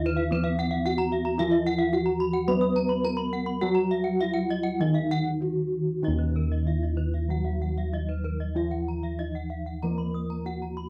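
This is a Balinese gamelan excerpt in Eb pelog, cut from a longer piece, moving at roughly 95 to 112 BPM in a straight 4/4 with a shimmering, hypnotic mood. A bronze metallophone carries the melody between Cb4 and Cb5, struck with padded disc mallets for a mellow, soft, airy ring. Beneath it, a second metallophone plays a dark, smooth accompaniment from Eb3 to Cb4 with a wooden mallet, while bossed gongs supply a round, full bass that sits close and up front. Two more metallophones spin bright arpeggios in the high register from Bb4 to Eb6, both played with horn mallets. Every metallophone uses paired tuning, so their tones carry shimmering beats. The dry, close recording has a 1970s studio character, and the music shifts into a new section at 6.0 seconds.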